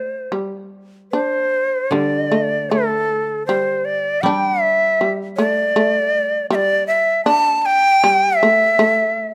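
Calm and austere, this short fragment of Japanese chamber music drifts in a free, rubato pulse around 72-80 BPM, with a bright, reedy shakuhachi carrying the airy, vibrato-laden melody up front over a mellow, buzzing shamisen second line, while a dry, woody koto played with fingerpicks adds accompaniment from 1.9 to 6.5 seconds, all captured by close, detailed microphones in light reverb.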